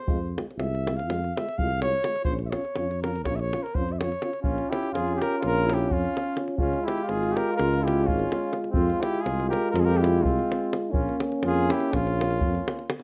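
A straight 9/8 pulse from a tight, close davul drives this bittersweet, virtuosic Balkan brass band piece, with the cornet carrying a mellow, lightly vibrato-tinged melody up front over a dark, prominent tuba bass. A French horn in plate reverb and a euphonium sit in the background as accompaniment, with the cornet featured in the opening stretch before a smooth-topped flugelhorn adds a second line, also in plate reverb, from 4.4 seconds as the harmony moves from Fm through Bbm and Db. The classical-style brass sits in a moderate room with a rough home-demo mix, and the passage is cut from a longer piece.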